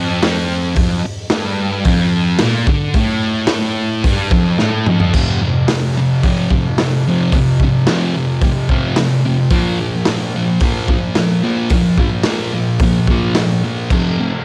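A thick fuzz guitar leads this swaggering, rowdy garage rock cut, its picked, double-tracked riff sitting up front in a warm low register from the very first second. Beside it, a raw acoustic drum kit pumps in a small room, with a boomy kick, a medium-tuned snare, toms, hi-hat and dark cymbals, all saturated and rolled off at the top. The straight four-beat feel opens on an F chord, then a drum fill from 4.6 to 5.1 seconds kicks the riff into the second section, built on power chords that shift to Bb before settling back on F. A light reverb and the character of a home cassette recording give the whole thing a raw immediacy. The passage is cut from a longer piece, so it starts and stops mid-stride rather than resolving.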